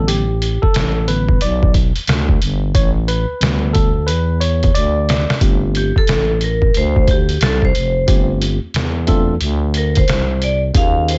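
Nocturnal and cool, this swung hip hop and jazz-hop fragment opens on a clean tine electric piano heard through its built-in speakers, riding over a growling, thick FM bass and an up-front, gritty, pitched-down sampler-style drum kit with a thumpy kick and tape-warm compression, until a drum fill at 4.7 seconds hands the melody to a bright, ringing hard-mallet vibraphone with slow motor vibrato entering at 5.8 seconds, the whole set in a dry, dusky mix.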